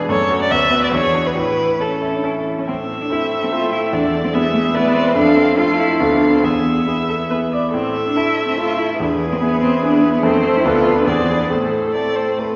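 A bright, polished concert grand sits up front in a wet concert hall reverb, surrounded by the veiled, con sordino tone of muted strings in this spirited, lively excerpt from a quick classical-period movement for piano quartet in A minor, moving in 3/4 at 133-148 BPM with a rubato feel. The muted violin carries the melody close and vibrato-rich with a soft attack and smooth top, while the muted viola adds accompaniment with light vibrato, and a distant muted cello sings a second line with portamento. The piano's brilliant, deep-bassed accompaniment rings with long sustain, and after a brief opening passage the harmony settles into A minor at 2.7 seconds, closing on that chord at 11.5 seconds.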